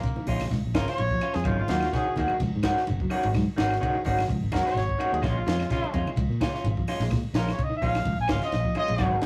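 A distant, vibrato-laden trumpet solo opens this hypnotic, driving afrobeat excerpt in Bb minor at 127 BPM, over dark, faintly broken-up guitar arpeggios, a dry compact cocktail kit with a punchy kick and high-tuned snare, and a grainy shekere. From about 0.2 s a round, foam-muted fingered bass and quiet, hard-handed congas join, followed by bright, twangy lo-fi guitar stabs sitting up front and woody claves in the background. The light 16th-note swing rides a Bbm7 to Ab7sus4 vamp, all captured as a rough rehearsal-room recording in a wet small room.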